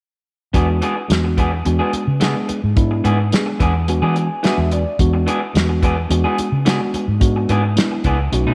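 A swaggering, laid-back straight-eighth soul blues groove in E mixolydian at 108 BPM opens on an E7 chord, with a dark, punchy soul drum kit and a round, foam-muted fingered electric bass up front, stabs from a slightly broken-up, lo-fi electric guitar through a small old amp, and a mellow, clean tine electric piano that adds a fill at 3.9 seconds, all set in a moderate echo-chamber reverb with small-room ambience in this short cut from a longer piece.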